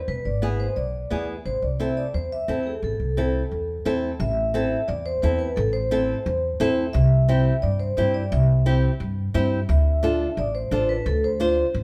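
Heard as a band playing live in one large studio with a moderate reverb, this passionate, fiery cumbia fragment sets a ringing, metallic vibraphone melody with slow motor vibrato over a woody, thumpy pizzicato upright bass and a small, up-front fingerpicked nylon-string guitar whose finger squeaks come through as the harmony moves from E7 through Am and C to Dm by 9.7 seconds.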